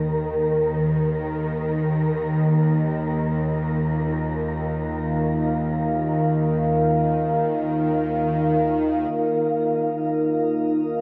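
A string-like, tense drone with vibrato sits up front from the start, its sawtooth tone moving through a filter sweep, while an airy, breathy wind-like noise texture hovers high above and fades out by 9.1 seconds. At 4.0 seconds a deep, mellow pad enters with sustained chords, thickened by chorus and a sub octave. In this ominous, desolate dark ambient drone, tuned slightly below standard pitch and cut from a longer piece, everything sits in a huge, wet reverb with a shimmer tail on the pad and texture.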